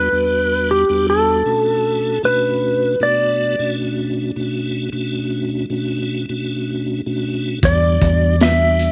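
Straight-eighth soul blues with a smoky, soulful mood, this clip is cut from a longer piece and moves at an unhurried pace with a light sixteenth-note swing. A clean, twangy lap steel guitar carries the melody up front, its dark, compressed slide tone shaped by volume swells. Beneath it, a piping, scooped tonewheel organ holds the accompaniment through a slow rotary speaker and chorus vibrato, with audible key click. The harmony rests on Em7 before moving to Bm7 at 1.5 seconds and returning to Em7 at 7.6 seconds, when a round, punchy, foam-muted electric bass and a crunchy breakbeat kit arrive together. The kit sounds gritty and saturated in a small room, with a tight kick, a medium-tuned snare and hi-hat under a rolled-off top, and light reverb surrounds the recording.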